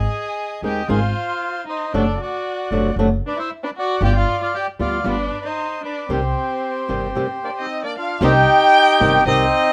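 A reedy, smooth bandoneon leads this tense, sultry tango in C minor at 115 BPM, its rubato melody moving over Ab, D7/F# and G7 before settling on Cm, in a passage cut from a longer piece. A bowed solo violin with vibrato and portamento sings an expressive second line, while a woody pizzicato upright bass and a fingerpicked flamenco guitar, entering at 0.6 seconds, sit up front beneath it. At 8.2 seconds a very quiet, distant chamber string section adds soft-attack stabs with a pure, floating tone, and a light reverb frames the recording.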